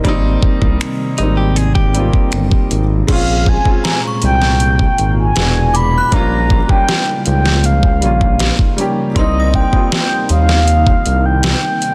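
A straight 4/4 groove at 79 BPM carries this sensual, longing contemporary R&B piece in Bb dorian, where an up-front electronic kit with knocking kick, deep soft-clipped snare, metallic hats, finger snaps and crash sits over a smooth, detuned synth bass, a dark, worn grand piano with audible action noise, and a very quiet glassy FM pad holding sustained chords, while a clean direct-recorded electric guitar plays brief delayed arpeggios from 1.2 to 2.9 seconds before a round, horn-like synth lead with chorus and delay takes the melody at 3.1 seconds, joined at 3.8 seconds by an inharmonic, ringing synth chime with tremolo in the background, all in a dry, dense and heavily limited modern mix.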